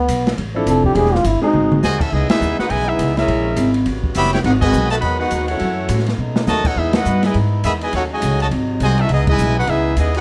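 A scooped, vibrato-laden solo trombone opens this sultry, brassy big band swing excerpt at 206 BPM in C# minor over a woody, thumpy pizzicato upright bass and a dark, boomy small-room drum kit, joined briefly by an intimate grand piano with audible action noise, until at 1.8 seconds a clear, smooth-topped trumpet section takes the melody up front, backed by a punchy, tight trombone section on a second line and, from 2.1 seconds, a very quiet trombone section holding sustained chords, with band accents punctuating the fast swing under light reverb.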